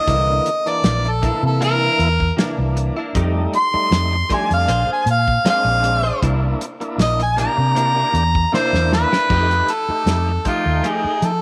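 A straight-eighth soul blues groove at 78 BPM in 4/4, with just a touch of swing on the sixteenths, sets a gritty, rollicking mood across this short section cut from a longer piece. Up front, a mellow harmonica takes a solo from the start to 9.3 seconds, its tone pushed into overdrive with a slapback echo and a distant, roomy character. Beneath it, a tonewheel organ fills out the harmony with a full, thick sound through a slow rotary speaker, while a clean electric guitar, recorded direct and compressed with an ensemble chorus, adds picked stabs from the background. A vintage muted fingered bass sits close and round, foam-muted and amped, alongside a cloth-damped drum kit with a tight kick, a medium-tuned snare, dark cymbals and a rolled-off top. The chords move through C9, F9 and Bb9 before returning to C9, and a drum fill from 8.5 seconds leads into a new section on F9 at 9.3 seconds, all set in light reverb with small room ambience.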